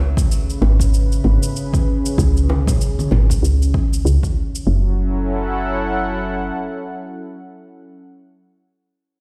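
Heard through a big sound system in a bare stone room with light reverb, this earthy organic downtempo fragment at 96 BPM in F# minor opens with a silvery, fingerpicked guzheng arpeggio echoing with delay in the background until 1.8 s, over a smooth, detuned sawtooth analog pad that carries chorus, tremolo, sidechain pumping and a filter sweep as it holds C#m7 before moving to F#m7 at 4.7 s; an up-front, woody, round FM bass pumps beneath, while a punchy, overdriven electronic kick, a gritty layered cabasa and bright, soft-handed bongos and congas add a lightly swung groove, and the pad alone rings on to 7.9 s.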